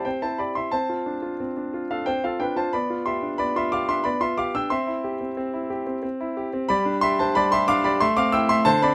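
A brilliant, up-front grand piano plays an elegant, playful classical-period sonatina in C major at 91 BPM in 3/4 with a rubato feel, its intimate, polished sound carrying audible action noise in light reverb as the harmony moves from C through Dm7/C and G7/B back to C before reaching A minor at 8.0 seconds in this brief passage cut from a longer piece.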